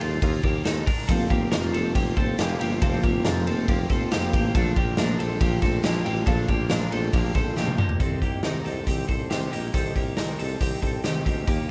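Restless and bittersweet, this jangly indie pop excerpt pairs bright, twangy, compressed arpeggios from a twelve-string electric guitar with digital delay against a warm, smooth-topped tuba carrying the bass with light vibrato. A gritty, saturated garage drum kit sits up front with a punchy kick, a medium-tuned snare and a pumping stone-room sound, while a full-bodied, shimmering jumbo twelve-string acoustic joins at 1.1 seconds with octave-doubled picked accompaniment through an ensemble chorus. The dry mix moves from Ebsus2 through Fsus4 and Bbmaj7, and a drum fill at 7.6 seconds leads into a new section on Cm at 8.0 seconds.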